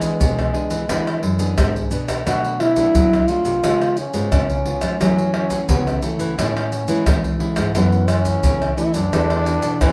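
A raspy, growling trombone takes a jazz-style solo with scooped notes and light vibrato over a sunny, joyful samba-choro groove, backed by a fingerpicked classical nylon-string guitar, a dark, thumb-plucked nylon-string guitar on the bass line, and maracas, tight surdo, pandeiro and tamborim played with hard hands, all captured as a band playing live in one room with moderate studio reverb in this short clip from a longer piece.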